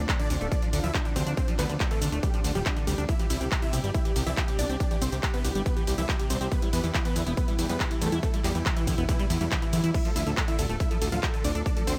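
Set in light reverb, this bittersweet, euphoric slice of uplifting trance, cut from a longer piece, runs at 140 BPM in straight 4/4 in D dorian, moving through Dm, Cadd9, Em and back to Dm. An up-front, tape-warm, punchy layered kick and a small-room analog drum machine with handclaps, hi-hat, shaker, ride and crash drive it, while a fat, detuned sawtooth bass and airy supersaw stabs with a filter pluck and tape echo pump against the sidechain. Beneath them sits a squelchy, resonant acid bass playing background arpeggios with subtle chorus and echo, and a very quiet, silky string pad with vibrato holds sustained chords throughout.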